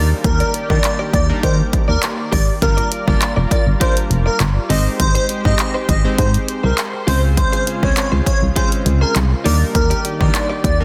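This euphoric, upbeat dance-pop excerpt opens with an airy, dreamy lead melody bathed in chorus and delay. It floats over glossy retro synth keys, a lush, warbling unison pad in the background, a bright, clean electric guitar riff recorded direct, and a round, dark FM bass, with the keys, pad and bass all pumping to the sidechain. A punchy analog drum machine of kick, hi-hat and handclaps joins at 0.2 seconds, up front beside the bass, while the chords move from Ebmaj7 through Gm7, Abmaj7 and Dbmaj7 back to Ebmaj7 in a dense, heavily limited mix with light reverb.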